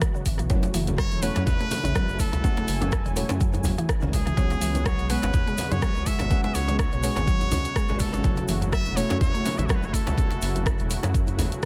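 Earthy and driving, this afro house excerpt rides a swung groove anchored by a deep, up-front electronic kick drum, with an electronic drum kit adding dark hi-hats and rim clicks. Congas ring out from a distant large room, a close, very quiet djembe is struck with hard hands, and a grainy tube shaker sits dry in the background. From 0.3 seconds a rumbling, detuned saw bass pulses with sidechain pumping, joining a smooth, warbling analog pad that has sustained chords from the start, also pumping as it moves between C#7sus4 and F#m7. A soft chord stab with a filter sweep and a woody, round mallet-like synth pluck playing arpeggios sit further back, both coloured by chorus and tape echo. From 1.0 seconds a brilliant, nasal trumpet with a straight mute carries a jazz-style solo melody, its echoes trailing through a reverb-soaked mix.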